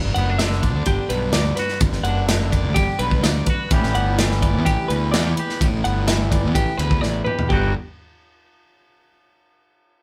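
Straight 4/4 drives this intricate, wistful math rock and midwest emo excerpt, as a clean, twangy electric guitar voices Gmaj7 and then A9sus4 while a compressed twelve-string electric guitar picks high arpeggios, a warm, fuzz-overdriven fingered bass sits up front, and an acoustic studio kit with a punchy kick, bright cymbals and a medium-tuned snare plays a fill at 7.0 seconds, the whole band captured live in one moderately ambient room.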